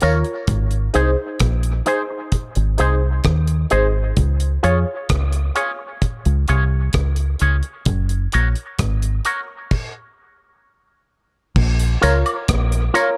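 A deep, round fingered electric bass sits up front in this meditative, spacious dub reggae excerpt, moving between Gb1 and F2 with a dark, punchy, foam-muted tone at 65 BPM in 4/4 and Bb minor. A dry, acoustic drum kit with a tight kick, crash cymbal, hi-hat and rim click holds a straight feel alongside it, while an electric guitar through an envelope filter plays clean, picked, twangy accompaniment, compressed and treated with tremolo, a high-pass filter and dub echo. A detuned sawtooth chord stab adds muted, evolving hits with a fast attack and decaying filter pluck, its moving notch and phaser colouring the same register as the guitar, also under dub echo. The chords pass from Ab to Db to Gb before landing on Bbm at 11.6 seconds, where a new section begins, with a part muted and a filter sweep running from 0.5 seconds and a stop from 9.7 seconds. Vintage, band-limited tambourine and woodblock, with maracas and group handclap, sit in the background with dub echo only at the very start and again from 12.0 seconds, all set in light reverb and small room ambience.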